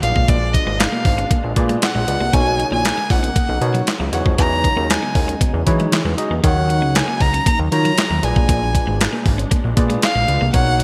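A bright, glossy digital production bathes this slick, danceable early-eighties boogie funk cut in a lush hall reverb, with a crisp 8-bit drum machine up front driving a straight 4/4 at 117 BPM through thumpy kick, medium-tuned snare, handclaps and hi-hat under gated reverb. A fat, detuned sawtooth-and-square analog bass with a filter sweep sits just as forward, while a barky, gritty overdriven tine electric piano supplies the accompaniment, a clean picked electric guitar with subtle chorus plays a riff in the background, and a smooth, very quiet analog pad holds sustained chords. Over the top, a single dark, woody violin carries the melody with light vibrato across lush chords such as Bmaj9, Emaj13 and Ebm9.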